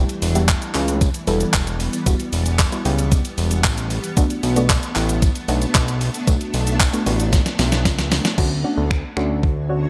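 A crisp 8-bit digital drum machine sits up front in this carefree, summery dance-pop excerpt at 114 BPM, its thumpy kick, fat snare, claps, snaps, hi-hat, shaker and crash bathed in gated reverb, with a fill from 7.3 to 8.4 seconds. Sharing the front of the mix, a thick, detuned sawtooth analog bass with a filter sweep pumps alongside a soft, round, chorused and phased pluck and a cloudy, evolving granular pad, while a jingly, distant tambourine adds a faint shimmer. The harmony moves from Em to Bm7 and lands on Dmaj7 at 8.4 seconds, all in a bright 1980s-style digital production with light ambience.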